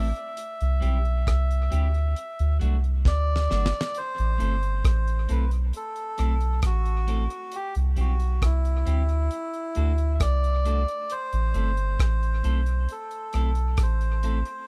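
A slow, straight 4/4 roots reggae groove at 67 BPM in A dorian sets a laid-back, serious mood, as a damped, fat-snared 70s drum kit and a deep, round dub sub bass sit up front under a reedy, breathy melodica melody and twangy clean electric guitar accompaniment, both treated with dub echo and plate reverb, while the chords move from C to D to Am and a drum fill at 3.1 seconds leads into the longer second section of this rough home demo mix cut from a longer piece.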